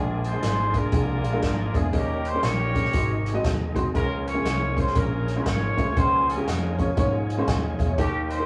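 A mellow, vintage-toned horn section carries the melody up front from the very start, joined at once by a woody, slightly detuned upright piano and a gritty overdriven tonewheel organ holding sustained chords in the background through a slow rotary speaker and chorus vibrato. This is an uptempo gospel passage in 4/4 at 119 BPM, swinging its eighth notes with a hopeful, soulful mood, cut from a longer piece. A fingered electric bass, punchy and bright through an envelope filter, anchors the low end, while a swinging big-band drum kit enters at 0.2 seconds with a punchy kick, a medium-tuned snare and hi-hat sitting airy and up front. The horns play tight and jazz-styled with vibrato, and the piano's short sustain adds a natural, woody touch alongside them. The harmony moves through Bb7, Eb7, Ab7 and Db6 before settling on Bbm7/Db, all heard in a rough rehearsal-room recording with a wet, small-room reverb.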